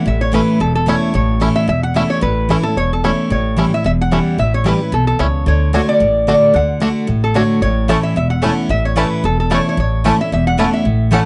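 Joyful and virtuosic, this short bluegrass passage, cut from a longer piece, rides a light swing in four. Up front, a lap resonator guitar carries the melody with a nasal, metallic slide tone and fingerpicks, while a bright, full-bodied dreadnought with fresh strings plays picked accompaniment beside it. A pizzicato upright bass with gut strings gives a woody, thumpy foundation, and a twangy, percussive banjo adds arpeggios with its fingerpicks. At 7.9 s a mandolin joins with round, double-string stabs. The harmony moves from A to A7, on to D and back to A, all under light reverb with a soft top end that stops at 10.9 kHz.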